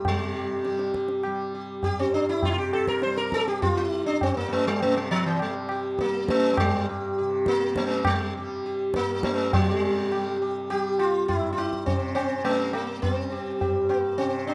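Hindustani classical music in raga Bageshri on G, this solemn, introspective excerpt moves at 102 BPM in a straight 4/4, with the sitar carrying the melody between E3 and C5, its warm, plectrum-plucked tone buzzing and shimmering with sympathetic strings as it sits up front in the mix. Beneath it, a mellow, softly plucked tanpura sustains a buzzing, shimmering drone from G2 to G3, while low-tuned tabla rings out close and dry. The rough home-demo sound is bathed in a moderate plate reverb, and the music shifts into a new section at 9.5 s before the cut at 14.5 s.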